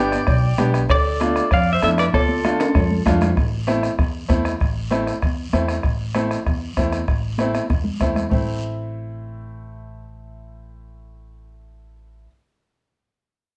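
A straight, driving cumbia pulse at 194 BPM in 4/4 sets a danceable, fiery mood in A minor. The soft-beatered bombo thumps in a live room beside a raspy, vintage guiro and thick-skinned, high-tuned congas played with soft hands. Ringing metal-shell cowbell and timbales sit in the background. Over the opening G and Dm chords, a twangy, compressed clean electric guitar carries the melody with spring reverb, while a punchy, vibrato-laden clarinet plays a distant, forceful second line in jazz style, both stopping at 3.0 seconds. The harmony settles on Am at 3.4 seconds, and the remaining percussion drops away at 8.4 seconds. A brilliant, up-front upright piano with short sustain and a woody, thumpy gut-string pizzicato bass continue until 12.3 seconds. Light reverb and a worn, warbling cassette-tape pitch drift give this fragment of a longer piece an aged character.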